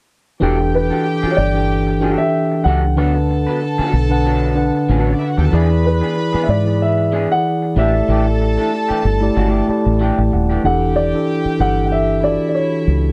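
A dry, close 1970s-style studio sound frames this cinematic, smooth soul excerpt at 94 BPM in E minor with a light swing, where a boxy, short-sustain baby grand carries the melody over a round, punchy, foam-muted fingered bass and a mellow tine electric piano that plays a fill at 9.4 seconds, while a twangy, slightly broken-up electric guitar riff stops at 10.6 seconds and a reedy violin section with light vibrato and tape echo adds a second line.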